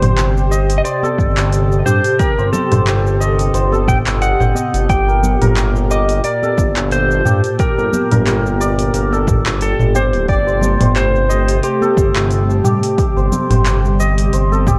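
This excerpt of organic downtempo opens with a clean electric lap steel guitar carrying the melody, played with fingerpicks and slide, its notes shaped by volume swells and a digital delay. Around it, a hammered santur rings and shimmers in arpeggios through tape echo, while a mellow analog pad holds sustained, detuned chords in the background, treated with chorus and sidechain pumping. An up-front synth bass with a smooth sawtooth and square tone and a moving notch sits beneath. Alongside it plays an overdriven afro-pop kit of cabasa, handclaps, metallic hi-hat and toms that sounds re-recorded in a small room, plus soft-handed congas ringing in the background. A punchy, layered electronic kick with overdrive enters at 1.2 seconds, anchoring the lightly swung groove in a hypnotic, mystical pulse over chords moving from Am7b5/G to Gmadd9 and back. Light reverb and digital ambience surround the mix, and a worn cassette character adds warbling pitch drift throughout.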